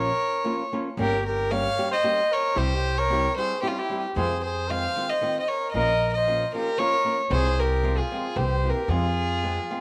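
In a straight 3/4 at 114 BPM, this passionate, dramatic mariachi excerpt in F minor puts a rich, bowed violin up front on the melody with a soft-attack, floating sul tasto tone, alongside a mellow trumpet with light vibrato on a classical-style second line, fingerpicked flamenco guitar with audible finger squeak, and a woody, growly pizzicato upright bass, set in light reverb and studio ambience as the chords move from Bbm through Gdim and C to land on Fm at 8.9 seconds.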